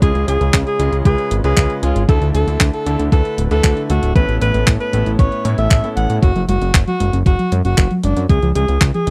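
A breathy, whispered alto saxophone with light vibrato and tape echo carries the melody through this melodramatic, nostalgic italo disco excerpt at 116 BPM in F# minor, over a thumpy, overdriven electronic kick, a sampler-style drum machine of overdriven handclaps and hi-hat, and a fat, detuned sawtooth bass with a filter sweep sitting up front, while clear, vintage grand piano stabs play until 6.2 s and a soft, round pluck with lush chorus, cassette tape and tape echo takes up arpeggios in the background from 6.4 s, all captured in a dry, close 1970s-style studio sound.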